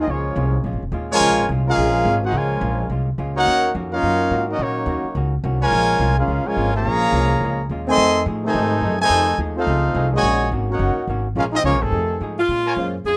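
Sultry and swinging, this big band jazz excerpt moves at a brisk 213 BPM in 4/4 with a swing feel, set in Bb minor over a cycle of Bbm7, Ebm7 and F7#9 chords. A clear trumpet section carries the melody from the start, with a clear trombone section beneath it on a second line, played with light vibrato. A woody, thumpy upright bass sits up front throughout, while a dark, clean hollow-body electric guitar comps very quietly in the background. Near the end, at 12.4 seconds, an edgy saxophone section with vibrato takes over the melody, joined by a brilliant, vintage-toned trumpet section stab at 12.7 seconds and a brief touch of intimate concert grand piano with audible action noise. The sound has a moderate studio reverb and the rough feel of a home demo mix, and the clip is cut from a longer piece.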